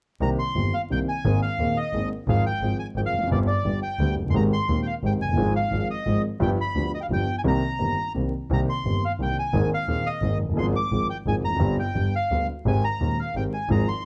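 At 0.2 s, a bandoneon, a concert grand piano and a bowed double bass all begin together in this passionate, tense tango fragment in three, played with a rubato feel and cut from a longer piece. The bandoneon carries the melody high and up front, its reedy, vintage tone sounding band-limited, while the warm piano sits just as close, supplying accompaniment with a deep bass reaching far down. A single distant double bass, clear and smooth with an even vibrato, anchors the low end. The harmony circles through Cm7, Abadd9, Fm/Ab and a suspended G resolving to G, with Abmaj7 and G7 along the way, and the whole phrase begins again at 8.5 s before the bandoneon closes out at 14.1 s. Light reverb, a dark, warm production and a layer of vinyl crackle complete the sound of the recording.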